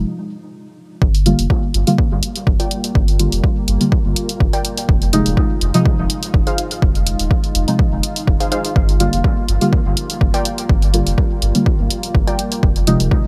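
Hazy and nocturnal, this dub techno excerpt moves at 124 BPM in G phrygian with a light 16th-note swing, opening on a one-second break where a moody, slow-blooming ambient pad, up-front detuned chord stabs with dub echo and phaser, and a round, soft sub bass all breathe under sidechain pumping over Fm7 before shifting between Gm7 and Fm7. A punchy, overdriven kick arrives at 1.0 seconds with a tape-warm analog hi-hat just after, and at 2.6 seconds a warbly, lo-fi pluck with cassette-tape grit, chorus and dub echo drifts in high above. The mix is dry and close, the kick sitting prominently at the front.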